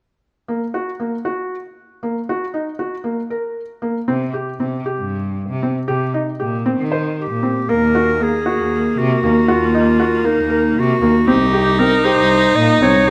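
Urgent yet hypnotic, this contemporary instrumental piece, cut from a longer work, moves in a straight 7/8. A felt-muted upright piano opens at 0.5 seconds with soft, intimate arpeggios in the middle register, its thin felt tone mellow and up front. A single bowed cello enters at 4.1 seconds with a rich, focused bass line, its vibrato carrying a smooth top. At 7.2 seconds a bright, close-miked clarinet takes the solo melody in a classical style, and soon after a lone viola adds a clear, even second line with vibrato. The harmony moves between Eb minor and C minor, and a light reverb surrounds the close, present ensemble.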